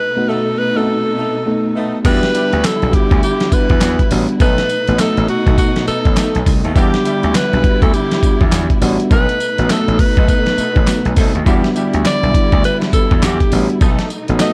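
New jack swing R&B in E minor at 102 BPM with a swung sixteenth feel, this confident, slick excerpt opens with a two-second break where a clear, present alto saxophone carries the melody over lush bowed strings, a round FM electric piano with chorus, and loose horn stabs in the background. At 2.0 seconds a dusty, compressed sampler-style drum kit with a thumpy kick, handclaps and tambourine comes in up front, joined by a punchy overdriven slap bass. The groove then alternates between B7 and Em7 in a dark production with digital ambience.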